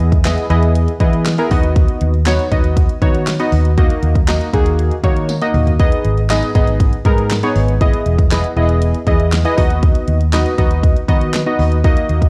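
A straight 4/4 dance-pop groove at 119 BPM in B major sets a carefree, summery mood, with a punchy, electronic pop drum kit of kick, fat snare, hi-hat, handclaps and toms up front (a drum fill at 5.3 seconds), a dark, foam-muted electric bass pumping from sidechain, detuned sawtooth analog keys with chorus and a filter sweep moving through Emaj7, B/D#, D#m and G#m, and a jingly tambourine in the background, all dry and coloured by worn, warbling cassette tape in this short cut from a longer piece.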